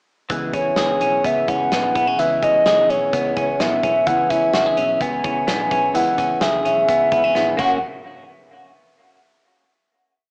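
This breezy, bright piece of jangly indie pop opens at 0.3 s at 128 BPM in a straight 4/4, with guitars, bass and drums entering together over a C#m7 chord. Up front, a clean, compressed semi-hollow electric guitar plays a fingerpicked roll pattern of arpeggios through spring reverb. Beneath it, a full-bodied jumbo steel-string acoustic guitar adds folk strumming in open chord shapes, and a dark, round, foam-muted electric bass drives eighth notes from the background. A moment later, a warbling square-and-sawtooth lead enters with a soft attack, detuned and mellow under chorus and vibrato, singing sustained, nostalgic call phrases built on a motif. The big-room rock kit keeps a brisk indie backbeat with a tight kick and a medium-tuned snare, throws in a fill at 7.4 s as the harmony shifts to F#, and the piece closes on a final hit at 7.8 s. The whole mix carries the small-speaker character of a home cassette recording in a modest room, with tape coloring the guitars, drums and lead.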